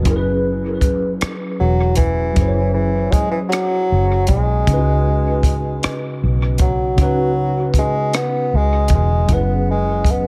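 Slow six-eight R&B with a yearning, sultry mood, this fragment of a longer piece is carried by a mellow bassoon playing the melody as a solo across all 10.3 seconds. The bassoon has a classical-style tone with light vibrato and a roomy, punchy character, and dub echo trails its phrases. A tine electric piano fills in the accompaniment through a combo amp, its clean, warm sound thickened by ensemble chorus and dub echo, moving from F#9sus4 to C#9sus4 and back. Underneath, a vintage muted fingered electric bass gives a dark, round, foam-muted low end, while a compact cocktail drum kit keeps hi-hat, kick and rim click up front with a smooth, rolled-off top. Light reverb and small room ambience frame an echo-heavy mix.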